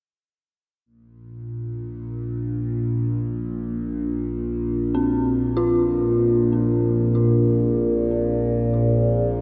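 Dark ambient drone in free time, dark and desolate, cut from a longer piece and set in a wet cathedral reverb with the worn, warbling pitch drift of old cassette tape. An up-front, resonant drone of sawtooth and sine with moving overtones sustains on a Bbsus2 chord from 1.3 seconds, low in range and treated with chorus, phaser and its own reverb. At 4.9 seconds a dark, detuned synth bell enters with eerie, inharmonic FM arpeggios, mellow and decaying, colored by chorus, phaser and delay.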